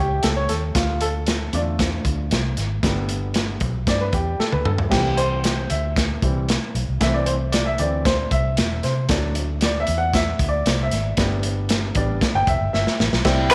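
A moderate plate reverb wraps this joyful, uplifting uptempo 1960s-style soul cut at 115 BPM, where a clear, woody upright piano carries the lead through a chord run from Dm to G, C and D, over a dark, round, foam-muted fingered electric bass and a gritty, saturated breakbeat drum kit with dark cymbals and fills at 4.4 and 12.7 seconds, before a twangy, slightly broken-up electric guitar through a small old amp sounds a single up-front note with lush chorus at 13.5 seconds.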